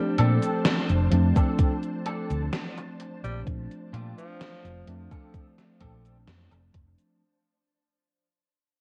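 A slow, straight 4/4 pulse at 64 BPM comes from a gated 80s digital drum machine that enters at 0.2 s with cabasa, hi-hat and a gated-reverb snare, overdriven and re-recorded in a small room. A thumpy, overdriven electronic kick joins at 1.4 s, sitting up front. This faded, woozy vaporwave fragment in Bb major rests on a single Bbmaj9 chord and fades out across its whole length. A round, dark hollow-body bass anchors the low end, while a mellow tine electric piano with analog chorus plays the accompaniment and a silky string machine holds sustained chords with slow attack and long release. A twangy, scooped clean electric guitar picks a compressed riff through chorus and tape echo. In the background, a raspy, growling tenor saxophone carries the melody with 12-bit sampler grit and tape echo until 4.9 s, all under a worn cassette haze of warbly pitch drift and light reverb.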